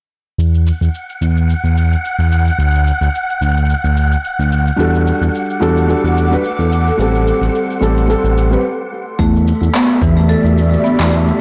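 A smooth, tube-saturated synth bass and overdriven electronic cabasa and handclaps open this meditative, hypnotic organic downtempo piece, soon joined by an airy, breathy wind-like noise texture, all carried by a lightly swung groove over Esus2, D, Em11 and Am7 chords in a blown-out, overdriven recording with light reverb. A soft, felt-muted upright piano with delay and sidechain pumping enters at 4.8 seconds, followed by a cloudy, evolving granular pad that also pumps. The piano drops out as a brief break begins, and woody marimba arpeggios with delay and a deep, overdriven electronic kick arrive at 9.2 seconds.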